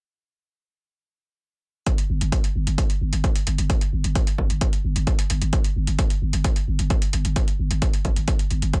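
A punchy electronic kick drum and metallic electronic hi-hats open at 1.9 seconds, sitting in a dry, small-room space, with the kick pushed up front and the hats quieter beneath it. This is a dark, hypnotic peak-time techno excerpt at a driving 131 BPM in a straight 4/4. Just after, at 2.1 seconds, a growling, buzzy 808-style bass sits up front around G1, its overdriven, low-pass-filtered tone pumping against the sidechain until 8.7 seconds, just before the cut at 8.8 seconds.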